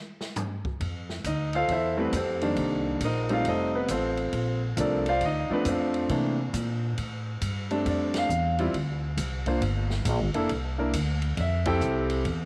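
A relaxed, swinging 4/4 groove at 136 BPM drives this short jazz piano trio piece in F major, as an open acoustic drum kit with dark cymbals and a boomy kick enters at 0.2 seconds, a woody pizzicato upright bass joins up front at 0.8 seconds, and a clear concert grand piano with long sustain and tape echo carries the melody from 1.3 seconds over chords moving from Fmaj9 through Bbmaj9 and Gm7 back to Fmaj9, with band accents at 8.1 and 11.6 seconds in a small room with light reverb.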